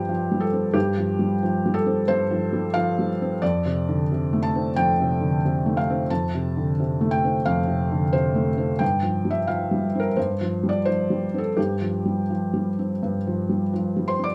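Neoclassical minimalist piano in F major, this brief cut from a longer piece carries an intimate, hopeful mood at around 89 BPM in 4/4, played with a loose rubato feel. A felt-muted upright piano plays alone for the full 14.3 seconds, ranging from F2 up to D6. Its tone is soft and mellow, with the thin felt lending a smooth, vintage character, and it sits up front in the sound. The harmony moves from Csus4/G to Fadd9 at 3.4 seconds, then back to Csus4/G at 8.8 seconds. A moderate studio reverb gives the piano a small sense of room around it, as if heard from a close seat in the same space.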